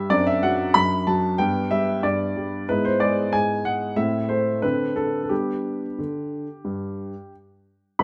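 Playful and elegant, this short passage is a classical-period piano sonatina in G major, cut from a longer piece and moving at 91 BPM in 4/4 with a gently uneven sense of beat. A warm baby grand piano plays alone for the full 8.0 seconds, ranging from G1 up to B5. Its tone is warm and open, sitting up front in the sound with a light touch of reverb around it. The harmony moves from D7/F# to G, then through E/G# and Am to Amadd11/D before settling back on G at 5.3 seconds. The tuning sits slightly high, at A4 = 441 Hz.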